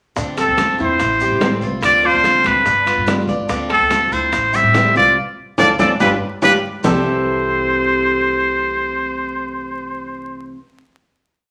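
A straight, danceable four-beat groove drives this sunny Cuban son and guajira piece: background congas with thick-skinned slaps and open strokes, tight, very quiet bongos in steady eighths with hand bell, ringing metal-shell timbales playing a shell pattern and bell, and grainy, compressed maracas. A woody, thumpy upright bass plays a syncopated pizzicato figure beneath a warm, picked steel-string acoustic guitar strumming with muted slaps, while the metallic double strings of the Cuban tres spin an arpeggiated guajeo. Up front, a nasal trumpet with straight mute carries a motif-based solo melody of jazzy call phrases, with vibrato and scooped notes, and a bright, fingerpicked nylon-string guitar adds a background harmony line, mostly in sixths, with audible finger squeak. The montuno vamp cycles over minor-seventh and dominant chords, gathering into a band accent from 5.2 seconds, and the percussion stops at 6.9 seconds as the rest of the group holds a final C6 chord until about 10.5 seconds. 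A wet, large studio reverb and a layer of vinyl crackle give the recording a vintage sheen.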